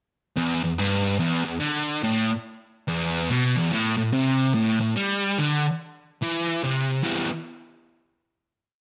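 Set in a moderate spring reverb, this brief, brooding rock piece in E minor at 144 BPM, with swung eighth notes and tuned to A4 = 445 Hz, features a solo fuzz guitar, dark, distorted and double-tracked up front, picking a heavy single-note riff from 0.4 seconds over Em and A5 before settling on a final Em chord at 7.1 seconds.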